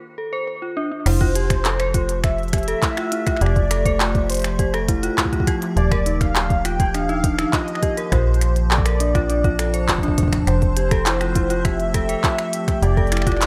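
Wistful and playful, this IDM excerpt at 102 BPM in F major opens with an eerie, detuned synth bell playing arpeggios through chorus, tremolo and dub echo, before a velvety synth lead melody, a metallic FM bass and a glitchy drum kit with clicky hats, snaps and handclaps arrive at 1.1 seconds, joined a moment later by a soft electronic kick, both drum parts treated with overdrive, while an icy, crystalline glass pad holds sustained chords and a very quiet reversed, swelling texture drifts in at 11.6 seconds over an echo-heavy mix moving through Fmaj9, Ebadd9 and Bbmaj9.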